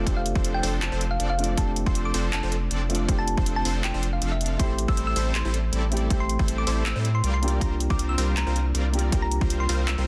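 A saturated sub bass sits up front, deep and thick with a fast attack, pumping under the sidechain alongside a hard-clipped, overdriven electronic kick in this euphoric, lush future bass excerpt, which moves in a swung half-time feel through F6, Am7 and C7sus4. Punchy detuned supersaw stabs carry the riff while a dark, boxy concert grand piano plays mellow accompaniment, both pumping and trailed by delay. Over them, a round, tine-like thumb-piano synth pluck carries the melody through chorus, phaser and delay from 0.2 s, with an overdriven trap kit adding handclaps and bright hi-hats, all in light reverb under a dense, heavily limited master.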